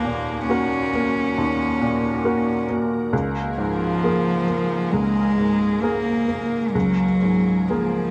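Neoclassical piano and strings in a fragile, melancholic mood, this short excerpt moves with a rubato feel in 4/4, cut from a longer piece. A bright upright piano carries the accompaniment up front, its worn, woody tone slightly detuned and intimate, with audible action noise from the instrument. Alongside it, a single bowed cello plays the second line close and intimate, sul tasto with an airy bow, soft attack and light vibrato. In the background, a soft organ-like pad holds sustained chords with a pure, calm quality, a slow attack, long release, ensemble chorus and its own built-in reverb. The harmony shifts from Ebm7 to Bbm7/Db at 3.1 seconds, and the whole is framed by light reverb in a dark, warm production.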